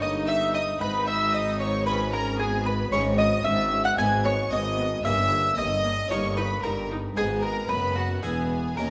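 In a straight 4/4 at 113 BPM, this stormy, dramatic fragment of a baroque-style concerto movement in G# minor puts a mellow, round mandolin up front carrying the melody, joined by a high, focused violin section on the tune and a second rich violin section playing a second line in the mandolin's register. A close, lush viola section and a brilliant, dry harpsichord with octave strings sit in the background as accompaniment, while a warm cello section with soft attack and portamento and a distant, intense double bass section anchor the low end. The chords move from D#/G through G#m, C#5/G# and Gdim7 before landing on E at 8.2 seconds, all within a moderate scoring-stage reverb.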